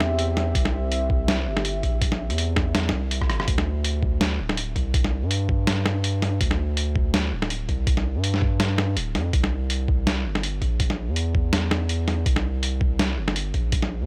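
A deep, warbling ambient pad with lo-fi sampler grit and sidechain pumping holds a sustained C chord over a thick, saturated sine sub bass and a gritty, pitched-down boom bap drum kit with a medium-tuned snare, rim click and hi-hat, joined at 0.6 seconds by a thumpy, tape-warm electronic kick, before the pad drops out at 3.4 seconds and this dark, cinematic half-time drum and bass at 164 BPM rolls on dry and up front with a light swing.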